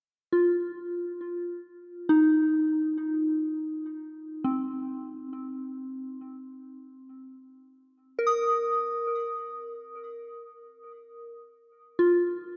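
A soft FM synth bell plays alone from 0.3 s, its pure, mellow tones striking quickly and then decaying, sitting up front with chorus and tape echo. This peaceful, serene ambient passage, cut from a longer piece, floats over a C minor add 11 harmony that gives way at 6.8 s to unaccompanied bell tones. A concert hall reverb with a 2.6-second tail surrounds the sound.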